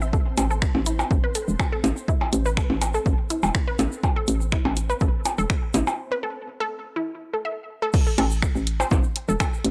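A straight 4/4 pulse at 123 BPM drives this quirky, clinical minimal techno cut in A minor, where an up-front electronic kick, an analog drum machine with crash cymbal, finger snaps and hi-hat, tape-echoed percussion blips and a bright, close tube shaker sit under a hollow, bouncy FM bass and a juicy, squelchy resonant blip pluck riff with chorus, analog delay and sidechain pumping, while a very quiet flickering granular texture stops at 6.0 s as a break begins, before the drop lands at 7.9 s, all captured as a dry, gritty hardware recording with transformer saturation.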